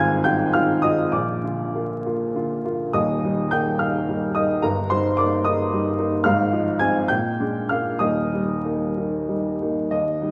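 A woody upright piano plays alone from the very first moment, its tone natural and placed up front, with long sustain letting each chord ring. This romantic classical character piece moves in 6/8 with flexible rubato, and its mood is passionate yet hopeful. The harmony circles gently through Fm7/Ab, Bb and Eb, touches Eb/G, then returns through Fm7/Ab and Bb7 to settle on Eb at 8.0 seconds. The piano spans a broad range from the deep bass up to the high treble, and it is tuned slightly below modern concert pitch, at A4 = 436 Hz. A recital hall's reverb, with a 1.6-second decay, surrounds the instrument, while a vinyl crackle sits beneath it, giving the recording an aged, intimate quality. The passage is a short cut from a longer work and ends at 10.3 seconds.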